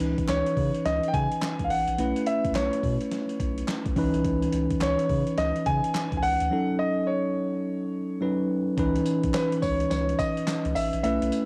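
A concert grand piano carries the melody from 0.3 s, its warm, natural tone and deep low end sitting up front with a cassette-tape haze. Beneath it, a bell-like tine electric piano plays bright, clean accompaniment, also up front and tinged by tape. A round, dark analog bass with a fast attack and sustained, sine-like body anchors the low end, while a gritty, compressed sampler-style drum kit, overdriven and re-recorded in a large room, supplies a thumpy kick, fat snare, hi-hat, tambourine and handclaps. A hollow, human group handclap sits in the background until 10.6 s. This confident, bouncy new jack swing cut in C# minor moves at 106 BPM in 4/4 with a swung sixteenth feel, cycling through C#m9, B9sus4 and D#m7b5 before returning to C#m9 at 8.8 s for a new section. Light reverb and the lo-fi character of a home cassette recording give this short fragment of a longer piece its dusty, intimate sound.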